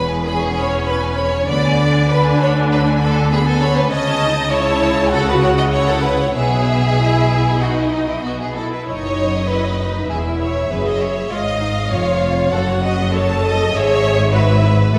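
A quick, lively classical-period movement for string orchestra, cut from a longer piece, moves with a spirited rubato feel in 4/4. The violin section carries the melody high in its range with expressive vibrato and a close, lush sound, while a second violin section plays a focused, up-front second line below it. The viola section enters at 0.2 seconds with accompaniment, its playing marked by portamento and a more distant placement. Cellos and double basses share the bass line, the cellos smooth and even with a smooth top and the double basses close and lush. The harmony travels from E through B and C# colours before settling on F#m and E over a bass note of G#. A long concert hall reverb surrounds the ensemble, and a layer of vinyl crackle runs through the recording.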